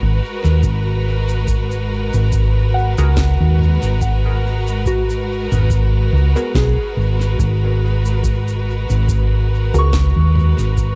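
An echo-heavy, hazy mix with little reverb and a rolled-off top carries this spacious ambient dub excerpt at 71 BPM in G# minor, resting on a G#m9 chord, where a round, up-front hollow-body electric bass sits beneath distant, biting bowed strings and a soft FM synth bell playing arpeggios with chorus and dub echo, while a tape-warm electronic kit with woody snare, cabasa and toms enters at 0.4 seconds, an overdriven analog kick follows in the background at 0.6 seconds, and a muted sawtooth chord stab with phaser and dub echo appears from 3.0 to 10.0 seconds.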